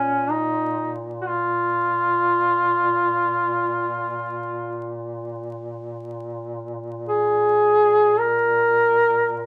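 From its opening, this short fragment of a mournful, solemn Caucasian folk lament presents two duduks together, moving in free time. The lead duduk, warm-toned and placed up front, carries the melody between Db4 and Bb4, its vibrato and scooped notes giving the line a keening, folk-style voice. Beneath it, a mellow second duduk sustains a low drone on Bb2, set much quieter and also shaded with vibrato. Both instruments sound distant and roomy in a moderate studio reverb, while a layer of vinyl crackle gives the recording an aged surface. Tuned to A4 at 441 Hz, the passage runs as a single unbroken section for its full 9.5 seconds.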